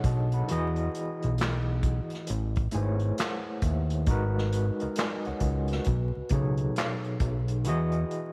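A slow, sultry neo-soul groove at 67 BPM in 4/4, with sixteenths swung at 63%, is carried by a roomy acoustic drum kit played with bundle sticks, where a tight kick, a medium-tuned snare, hi-hat and handclaps sit together from the start. A thick, detuned analog bass with a plucky filtered attack holds down the low end until 8.0 seconds, while a barky, gritty tine electric piano with medium tremolo, heard through a combo amp, moves through Emaj7, Amaj9, G#m7 and B13 and adds a fill between 2.3 and 4.1 seconds. Light reverb and vinyl crackle give this soulful R&B fragment, tuned to A4 = 436 Hz, a hazy, lived-in studio feel.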